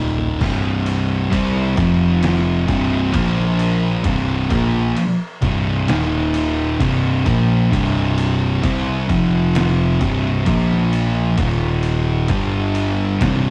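A straight, plodding 4/4 groove opens with a dark, up-front fuzz guitar, a growly picked electric bass with overdrive and a brief drum fill before a second dark, up-front fuzz guitar enters, the pair grinding out a brooding, hypnotic stoner-doom riff over power chords centred on C5. A gritty, pitched-down trip hop sampler-style kit adds a thumpy kick, medium-tuned snare, crashes, ride and toms. Everything is captured with a rough rehearsal-room character, tube saturation and moderate reverb in this fragment cut from a longer piece.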